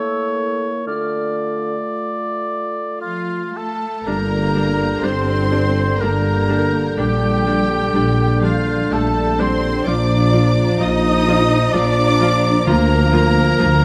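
A rubato 3/4 pulse at 55-65 BPM carries this melancholic, elegiac slow romantic orchestral movement, cut from a longer piece, where a warm solo oboe, a very quiet flute section, a mellow bassoon and a dark, distant French horn section open in D minor before a rich violin section takes the melody at 3.0 s alongside a clear second violin line and a cello section sliding expressively between notes, and a barely audible viola section, a smooth-topped tuba and a double bass section deepen the turn to G minor at 4.1 s, with round, soft-mallet timpani arriving at 12.7 s under light reverb.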